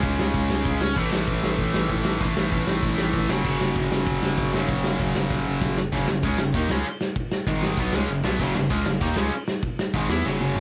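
A tight, bright distorted electric guitar, picked and double-tracked and sitting up front, drives this upbeat, energetic punk rock clip with a riff that runs from start to finish. Beneath it, a growling FM bass gives thick, sustained low notes with a fast attack. A loose indie acoustic drum kit keeps a straight beat, sitting up front yet sounding distant and roomy, with a punchy kick, dark cymbals and a medium-tuned snare. Drum fills arrive at 5.3 seconds, leading into the second section at 5.9 seconds, and again at 10.2 seconds. The harmony moves through power chords on C#, A, F# and G#. With little reverb and a dry, home-recorded cassette sound, this clip is cut from a longer piece.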